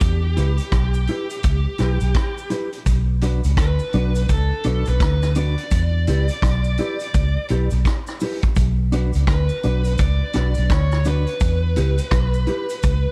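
A dry, dark production frames this hypnotic, meditative roots reggae excerpt at 84 BPM with a swung sixteenth-note feel, where a round, foam-muted fingered bass and a vintage kit of punchy kick, hi-hat and rim click sit up front, a cabasa stays in the background, a clean, compressed mellow electric guitar with tape echo joins at 0.4 s, and a distorted high-gain lead guitar carries the melody through its own tape echo as the chords alternate between Em and Bm.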